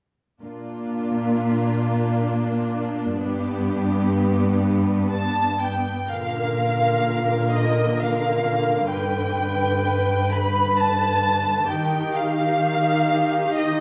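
A cut from a longer cinematic film score opens at 0.4 seconds with muted string sections playing together in Bb major, at a slow, rubato 64 BPM in 3/4 and an uplifting, moving mood. A chamber violin section carries the melody up front, its con sordino tone veiled and dark with a soft attack, vibrato and a smooth top. Beneath it, a studio viola section fills in lush, muted accompaniment with vibrato, while a cello section holds the bass with a distant sound and only light vibrato. The harmony moves between Bb and G, and at 11.7 seconds it settles on an Ebadd9 chord as the second half of the passage unfolds. A moderate scoring stage reverb lends the bowed ensemble a gentle sense of space, and all three sections play through to 13.8 seconds.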